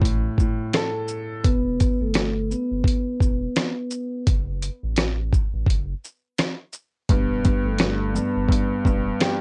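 Boom-bap hip-hop in E minor at 85 BPM with a swung 16th-note feel, moody and tough, this short excerpt rides on a gritty, up-front sampler-style drum kit with a thumpy kick, medium-tuned snare, rim click, hi-hat and shaker, all carrying 12-bit sampler crunch. A deep, round analog bass with transformer saturation sits low, while a woody, clear upright piano with cassette-tape coloring appears at the start and returns at 7.1 seconds. A mellow, close-miked vibraphone played with soft mallets carries the melody from 1.4 seconds over Em and F#m chords, its ringing metallic tone also passed through cassette tape, and the whole home-recorded mix has light reverb.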